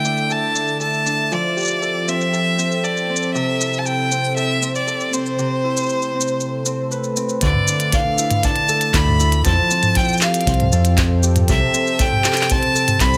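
Autumnal and wistful, this folktronica excerpt moves in a straight 4/4. A rich, focused bowed violin carries the melody up front, its vibrato trailing into delay, while a Celtic harp rings out fingerpicked arpeggios beneath it. A mellow analog pad of detuned sawtooth tones holds sustained chords with a slow attack and a chorus shimmer. A minimal electronic kit of clicky hi-hat, handclaps, shaker and toms sits softly in a small room, its tape-warm percussion dulled by low-pass filtering. At 7.4 seconds, the second section brings in a dark, round, overdriven fingered electric bass and a punchy acoustic kick played with brushes, deepening the low end under the harmony of Dmadd9, Fadd9 and C6. Light reverb gives the whole a close, intimate space.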